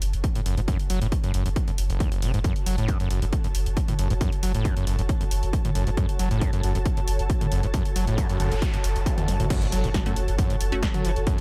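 An overdriven, heavy electronic kick sits up front in this dark, industrial slice of driving peak-time techno at 136 BPM in F# minor, joined from 0.4 seconds by a squelchy, screaming acid line with resonant filter sweeps, distortion and chorus, over a thick, saturated sub bass that pumps with the sidechain. A punchy, overdriven drum kit with crash, hi-hat, snare and toms and an ethereal, airy pad with ensemble chorus and reverb fill out the dense mix, while the pad fades in over the opening 9.5 seconds. A very quiet noise sweep enters at 8.0 seconds and a drum fill leads into the drop at 9.5 seconds, where an impact lands, and shortly after a crisp, detuned wavetable chord stab with dub echo flickers in the background.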